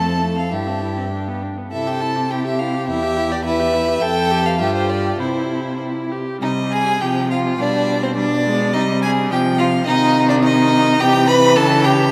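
Graceful and spirited, this quick classical-period movement for string quartet, cut from a longer piece in 2/4 with a rubato feel, sets a clear first violin melody with light vibrato above a close, up-front second violin line, a smooth viola accompaniment and a rich, bowed cello bass inside a vast, echoing cathedral space, with a second section opening at 6.4 s and the melody ending at 11.9 s.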